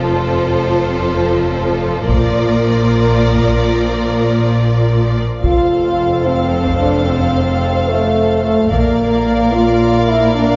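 Rolling in a straight 6/8 at 73 BPM in F major, this adventurous, majestic stretch of epic orchestral film score builds over F and Bb chords from lush, bowed violin and rich viola and cello sections with vibrato above a distant double bass section; heavy-stick taiko drums join at 2.1 seconds, and at 5.4 seconds a warm, expressive violin melody enters on a high F while a clear, up-front French horn section holds sustained chords, the whole ensemble set in the wet reverb of a church or concert hall.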